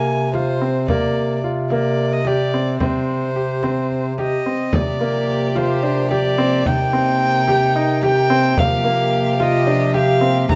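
A dark, airy-bowed violin melody opens over clear piano arpeggios with audible action noise, a warm bass clarinet holding a scooped, jazz-style bass line, and a deep frame drum struck with hard hands from 0.3 seconds, before a floating sul tasto string section enters in the background at 4.7 seconds, lending a pure glow to this urgent, pensive chamber piece in a brisk 7/8 at 219 BPM, cut from a longer work.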